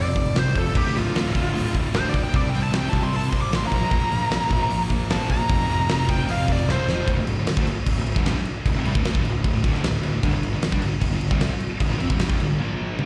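A huge arena drum kit with bright cymbals, a fat snare and a punchy kick sits up front in this driving, aggressive hard rock excerpt at 152 BPM in D minor, where a bluesy overdriven lead guitar solos with distortion, plate reverb, slapback echo and tape echo until 7.1 s over a fuzzy picked bass and riffs from a very quiet dark semi-hollow guitar, a sludgy distorted guitar and a scooped, double-tracked high-gain guitar in the background, heard as a live gig through the venue's PA with recital hall reverb and a faint mains hum before a brief break at 12.6 s.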